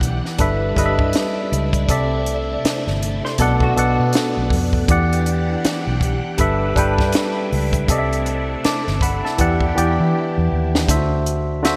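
Sultry, soulful neo-soul R&B in E minor at 80 BPM with a 16th-note swing, where a barky tine electric piano played through a combo amp sits up front over a round, foam-muted vintage fingered bass and a dry compact cocktail kit with a punchy kick and high-tuned snare under gated reverb, while a swirling, warbling phased string machine holds soft sustained chords, a dark hollow-body jazz guitar slips in briefly in the background from 3.2 to 4.7 seconds, and a drum fill at 10.1 seconds leads toward a closing D7, all set in a lush hall with bright 1980s-style digital polish.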